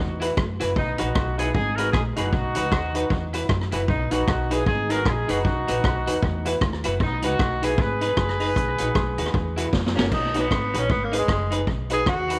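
Cheerful and upbeat, this swung ska excerpt opens with a clear, vintage horn section carrying the melody over a woody, thumpy pizzicato upright bass, a clean semi-hollow electric guitar with tube saturation, jangly detuned honky-tonk piano stabs sitting very quiet in the mix, and an up-front street-band drum kit with dark cymbals, a boomy kick and tape echo. The chords cycle through Esus2, B and G#m in a light, small-room reverb. After a drum fill at 9.7 seconds, a distant, roomy tenor saxophone takes a solo from 10.1 seconds until the cut at 12.4 seconds.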